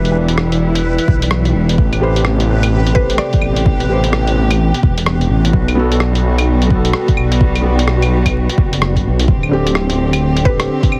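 Melancholic and ghostly, this future garage excerpt moves at 128 BPM with a swung 16th-note feel, cut from a longer piece. A felt-muted upright piano plays soft, vintage-toned accompaniment with audible action noise and an analog delay, while a studio string section holds sul tasto chords with gentle vibrato and a smooth top, both breathing with sidechain pumping. Up front, a detuned saw bass, saturated through tube warmth, churns with a menacing, evolving filter swell beneath the harmony as it moves from Em7 through Am9 and Gmaj7/B to D7sus4 at 9.3 seconds. A lo-fi sampler-style kit of claves, hi-hat and rim click sounds pitched down and muffled, joined at 1.1 seconds by a deep, layered electronic kick. A woody, round FM pluck with chorus and delay surfaces briefly around 2.9 seconds and returns near 10.5 seconds, and a reversed, granular texture glimmers dreamily in the background until 9.3 seconds. 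The mix is lightly reverberant and heavily compressed, with a radio-like squeeze and vinyl crackle.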